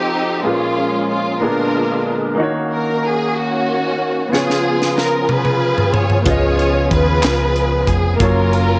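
Lightly reverberant and polished, this short cut from a longer slow gospel piece moves at 62 BPM in a gently rocking 6/8, with an uplifting, hopeful mood. A lush, bowed string section sits up front carrying the melody with expressive vibrato and portamento, while a woody upright piano supplies the accompaniment underneath. In the background, a fat, clean tonewheel organ holds sustained chords, its third-harmonic percussion and key click colored by chorus vibrato and a slow rotary speaker. The harmony moves from A#m7 through A#7b9 and D#m7 to C#7, landing on F#maj7 near the end. A crisp fusion drum kit with a high-tuned snare and punchy kick enters at 4.3 seconds with a fill, a round, dark hollow-body electric bass joins at 6.3 seconds, and a brief group handclap, hollow and set back in a small room, sounds at 7.2 seconds.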